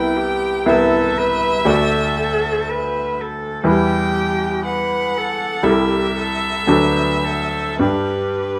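Light reverb frames this serene passage, cut from a longer classical piece, where a bright, polished grand piano sits up front with short-sustained accompaniment spanning the deep bass to the upper middle register, while a distant solo violin and cello sound from further back. This slow romantic movement for piano trio moves at roughly 50-61 BPM in 4/4 with a free, rubato feel. The violin carries the focused, vibrato-rich melody, and the expressive cello shapes a second line with vibrato and portamento, as the harmony passes from Cmaj7 through D, Em and Am7/C to settle on G at 7.8 seconds.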